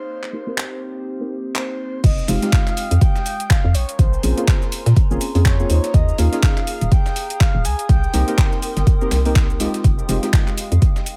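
A digital ambience surrounds this deep, hypnotic deep house cut from a longer piece, with a pumping sidechain pulse running through the pad, the chord stabs and the bass. It opens on a warbly, nostalgic, lo-fi pad of sustained chords with chorus and its own reverb, undergoing a filter sweep, while soft, dark chord stabs with chorus and dub echo move through Cm7, Fm9, Bbm9 and Eb9sus4 before returning to Cm7 and Fm9. A breathy, flute-like synth lead with vibrato carries the melody through dub echo until it stops at 8.8 seconds, and a deep house drum kit of crash, handclaps, hi-hat and shaker, overdriven and re-recorded in a small room, comes in almost at once. At 2.0 seconds the drop arrives, bringing an up-front, overdriven electronic kick, a hollow, bouncy FM bass with a punchy, knocking attack, and a very quiet, gritty sampler-style kit of hi-hat and snare. The gently swung groove stays hypnotic throughout.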